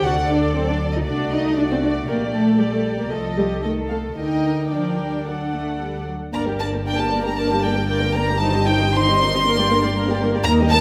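A quick classical-period movement for string orchestra, this urgent and restless passage is cut from a longer piece and moves with a rubato feel in 4/4. The violin section carries the melody up front, its tone pure and floating with a soft, sul tasto attack. Beneath it, a second violin section adds a darker, intimate line with light vibrato, while the violas supply a woody, lush accompaniment with a smooth top and vibrato. The cellos sit in the background with a rich, bowed tone, and the double basses anchor the low end from a distance with a soft, warm sound. All five sections play throughout the recording's 10.8 seconds, bathed in a recital hall reverb, with the harmony settling back onto G minor in the second section from 6.3 seconds.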